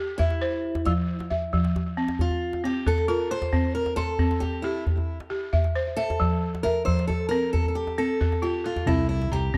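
Warm and hypnotic, this short excerpt of West African string and xylophone music moves at 90 BPM in a straight 12/8, with a boxy, picked old ladder-braced acoustic guitar carrying the melody as a solo throughout, its finger squeak audible and its tone trailed by tape echo. A woody, buzzing balafon played with hard rubber mallets spins dry, vintage arpeggios beside it, while a tight, cracking djembe enters at 0.2 seconds, and an overdriven, amped fingered electric bass arrives only at 8.9 seconds on a low C. The chords shift between C and F, and the dark production sits every part up front in moderate spring reverb and studio ambience.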